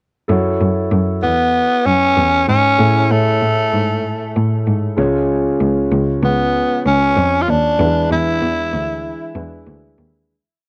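This home recording on cassette has light reverb around the parts. It is a short, glossy and uplifting 1980s-style pop piece at 96 BPM in straight 4/4: a single verse moving through F#m7, Amaj7, C# and E7, then fading out from 7.8 seconds. A warm concert grand piano carries the accompaniment with held drop-2 chords, long sustain, deep bass and touches of grace notes, colored by cassette tape. From 0.3 seconds a bowed cello plays a driving eighth-note bass line with chromatic approach notes; its sul tasto tone is nasal and boxy, close and intimate, with light vibrato and a soft attack. The tenor saxophone enters at 1.2 seconds and sits up front with the melody, a raspy, growling voice over a smooth top, shaping motif-based song phrases through cassette tape and analog delay.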